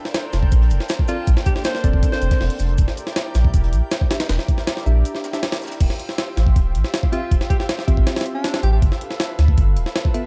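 A lush, chorused unison pad opens this frenetic, raw jungle drum and bass excerpt alongside a very quiet, saturated breakbeat kit and a faint reversed, granular swelling texture, which both fall away at 5.8 s, while an up-front, gritty sampler-style kit with a thumpy kick and high-tuned snare drives over a deep, round dub sub bass, and bell-like electric piano stabs and a jazz-style alto saxophone solo with subtone and vibrato, each carrying dub echo, float through a dark small-room production.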